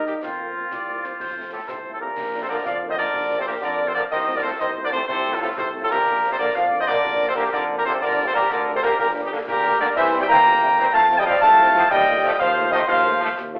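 Heard through a thin, telephone-like sound from far back in a reverberant studio, this cut from a longer military-style wind band march in Bb major strides proudly at 123 BPM in 6/8, with a warm solo cornet carrying the melody up front over an airy flute ensemble, a tight woodwind section and a clear euphonium entering at 1.5 s on second lines, a very quiet trombone section holding soft sustained chords, a dark tuba bass, a mellow French horn section in the background, and close, dry snare, bass drum and bright clash cymbals keeping the spirited pulse.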